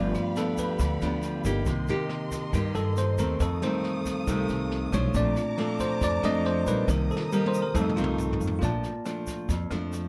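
A bell-like tine electric piano takes the lead in this breezy, romantic bossa nova excerpt at 138 BPM in Bb major, its clean, direct tone sitting up front over a bright, fingerpicked nylon-string guitar and a woody pizzicato upright bass. A bowed string section adds sustained chords with vibrato and portamento until 8.6 seconds. Meanwhile a dark, smooth brush kit with a punchy kick plays a fill from 6.9 seconds, and a grainy tube shaker sits close beneath. The recording is close and detailed, with little reverb, as the harmony moves through G7, Cm7 and F7 to Bbmaj7.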